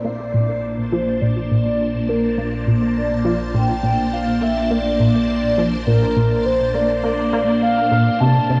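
A straight, steady 4/4 pulse drives this short cut from a longer piece of ambient, sequencer-driven space music, luminous and expansive in mood and resting on a Bbmaj7 chord. A plucky analog bass plays a punchy, funky riff with a fast, decaying filter pluck and a touch of ring modulation, shaped by a filter sweep and trailed by tape echo. A phased string machine sits bright and up front with swirling, vintage sustained chords, while a horn-like synth lead carries a round, soft-attacked melody with vibrato, analog chorus, shimmer reverb and tape echo. At 0.5 s an analog drone fades in low beneath them, nasal and slowly evolving through pulse-width modulation. A plate reverb and the warbling pitch drift of worn cassette tape lend the recording an aged patina.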